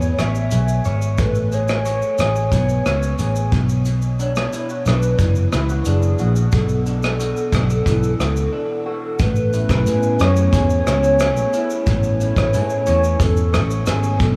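A dark, round, foam-muted electric bass sits up front in this hazy, nostalgic bedroom-pop excerpt, its picked notes punchy and amped. Beside it, a soft brush kit sounds distant and roomy, with a punchy kick, hi-hat, rim click and shaker under a rolled-off top. An electric guitar through a small old amp adds twangy, slightly broken-up picked accompaniment, colored by analog chorus and a warbly pitch drift. Over this floats a warbling lead that blends square, sawtooth and triangle tones, its soft attack, sustained notes and vibrato washed in analog chorus and tape echo. After a brief break at 8.5 seconds, a swirling, detuned analog pad enters at 9.5 seconds, airy and evolving in the background with phaser and chorus. Light reverb and small-room ambience wrap the whole mix, and the harmony moves between Amaj9 and Bm11 in a straight 4/4 feel.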